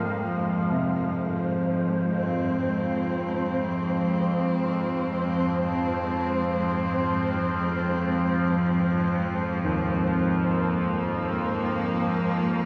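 A huge, wet ambient reverb with a long 8.8-second tail surrounds this ominous, unsettling dark ambient drone in F minor, which drifts in free time on a single F minor chord. Up front, a rich studio cello section sustains bowed chords with intense vibrato and a smooth top, beside a nasal, resonant drone whose overtones sweep and shift, thickened by chorus and its own reverb. Farther back, a polished grand piano plays arpeggios that repeat through tape echo and glisten in shimmer reverb. A breathy, wind-like tuned noise layer sits high and dark in the background, bathed in its own reverb and shimmer, and it fades out from 0.7 to 12.7 seconds. Cut from a longer piece, the passage holds its unsettled tension throughout.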